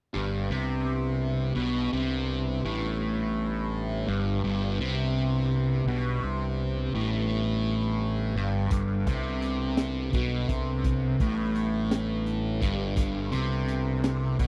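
Dry, close 1970s-style studio sound frames this hypnotic, trippy psychedelic rock fragment in 6/8, where an up-front, double-tracked fuzz guitar riff with phaser sits low over a round, punchy overdriven fingered bass and a soft, flute-like tonewheel organ holding chords through a slow rotary speaker in the background, until a crunchy, gritty breakbeat kit with a high-tuned snare and tight kick joins at 8.7 seconds.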